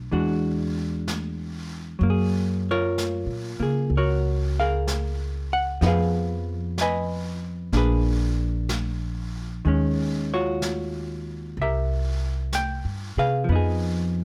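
A dark, clean hollow-body electric guitar and a woody, thumpy upright bass open this wistful, melancholic jazz ballad together, both sitting up front in the mix. The tempo is a slow 63 BPM in 4/4, with a gentle swing on the eighth notes. The picked guitar supplies chordal accompaniment through a rich progression of E9, Gbmaj9, Fm7b5, Bb7b9, Ebm11 and C7, returning to Fm7b5 near the close. Beneath it, the pizzicato bass on steel strings anchors the low end. From 0.1 seconds, a brush kit of snare and hi-hat adds soft, roomy texture from a distant place in a studio room. A light reverb gives the whole a gentle sense of space, and the passage is an excerpt of about 14 seconds from a longer piece.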